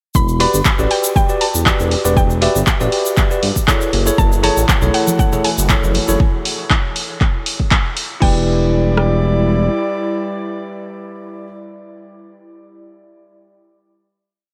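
A smooth, up-front sawtooth synth bass and a deep house kit with a deep, tape-warm four-on-the-floor kick and rim clicks open this short late-night deep house piece at 119 BPM in E dorian, joined at once by a grainy egg shaker in hand-played sixteenths. A bell-like tine electric piano adds bright, clean dotted-rhythm stabs with sidechain pumping and a diffuse ambient delay, while a punchy, dry analog drum machine supplies handclaps, open hi-hats and crash. In the background, a woody, round mallet-like FM pluck carries hook phrases through chorus, cassette tape and analog delay, and the mellow bass riff pumps under the kick across Em7 and F#m7. Around 4.5 seconds an airy, breathy pad enters with a slow attack and chorus, and congas briefly play syncopated hand drums with hard hands behind it. The drums and bass drop out between about 8 and 10 seconds, leaving the pad, pluck and electric piano to ring out on a final Em7 in a dreamy mix soaked in cathedral reverb.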